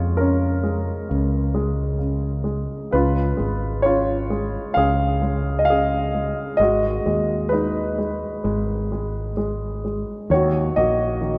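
A slow, straight 4/4 pulse at 65 BPM carries this reflective, intimate acoustic folk-pop ballad, a short section cut from a longer piece. A clear concert grand piano with deep lows and short sustain sings the melody up front, while a round, punchy fretless electric bass holds the low end through a Bbm7, Db7, Abm7 and Ebm progression across the full 11.4 seconds. The whole performance sits in the lush, lingering wash of a church or concert hall.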